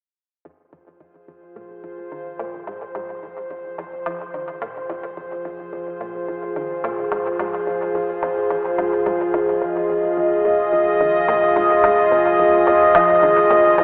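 An up-front sweeping resonant pad of evolving sawtooth chords with slow filter swells leads this mysterious, expansive ambient space-music excerpt in F minor at 108 BPM, joined from 0.5 seconds by a juicy, squelchy blip-pluck riff with chorus and tape echo while a round, very quiet analog bass holds low F beneath, all set in a wet spring-reverb space with an echo-heavy, telephone-like sound.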